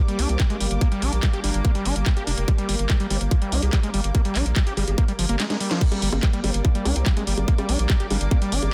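Opening straight into the music, a bubbling, detuned sawtooth texture holds sustained chords in the background, pumping with sidechain and carrying chorus and its own reverb, while a squelchy, gritty acid bass drives a distorted riff through dub echo. This short psychedelic trance excerpt in G minor moves at 144 BPM in a straight 4/4 with a driving, hypnotic mood. A dark, woody string section adds a lush, bowed ensemble texture with vibrato behind the synths, and a round, deep analog bass enters at 0.2 seconds, sitting up front with a sustained, wave-folded tone. A layered drum kit with a cracking snare, metallic hats, bongos, handclaps and crash cymbal is soon joined by the tight, up-front electronic kick, while a nasal, wobbling vowel-sweep bass weaves a second line in the background through chorus, high-pass filtering and dub echo. A drum fill at 5.4 seconds launches the drop at 5.8 seconds, all in a dry, dense and heavily limited modern mix.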